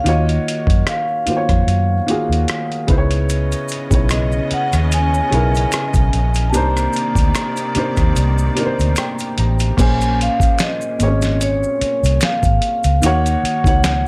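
A mellow vibraphone played with soft mallets opens this smooth, sultry neo-soul R&B excerpt at 74 BPM, its ringing melody carried by slapback echo and plate reverb alongside a woody, slightly detuned upright piano with audible action noise. Almost at once a dark, foam-muted electric bass and a dusty sampler-style drum kit settle in up front, the kit gritty and compressed with a thumpy kick, fat snare, rim clicks, hi-hat and crash, all under a gentle 16th-note swing. At 3.3 seconds a distant, lush string section adds bowed sustained chords with vibrato, while close, dry maracas, finger snaps and group handclaps enter quietly beneath. The harmony drifts through rich minor ninth chords, from Ebm9 down to Cm9. Around 8.2 seconds the kick drops out, and at 8.6 seconds the piano takes a short fill. The strings end at 9.7 seconds, and the groove moves into a new section on Bbm9 before closing on Ebm7, all within a light overall reverb.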